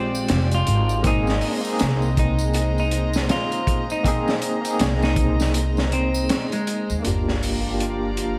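Trip hop with a dark, brooding mood and a swung sixteenth-note feel, this short passage is cut from a longer piece. A clean, twangy electric guitar carries the melody, over a barky, overdriven tine electric piano heard through a combo amp with tremolo, a low-pass filter and tape echo. A close, reedy chamber string section holds sustained chords with light vibrato and a gut-string, period-style tone roughened by vintage sampler grit. A woody, thumpy pizzicato upright bass sits up front beside a crunchy, saturated breakbeat kit with a high-tuned snare, tight kick, rolled-off top and gated reverb, while triangle and tambourine stay in the background of a small room. At 7.0 seconds the guitar drops out as a sub drop and an impact land, the electric piano gets a filter sweep and the harmony shifts. A tense, nasal drone enters at 7.7 seconds, all within a bright 1980s-style digital production with vinyl crackle.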